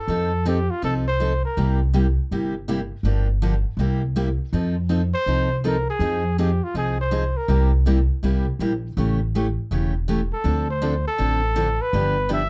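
Lively and playful, this excerpt of acoustic string swing at 162 BPM in C mixolydian features a mellow trumpet with light vibrato and scooped notes carrying the melody in phrases at 0.0, 5.1 and 10.3 seconds, bathed in plate reverb, over a picked steel-string acoustic guitar with audible finger squeak and a woody, thumpy pizzicato upright bass on gut strings, all up front in a dark, softly reverberant production moving through chords like F7, Gm7, A7 and Dm7.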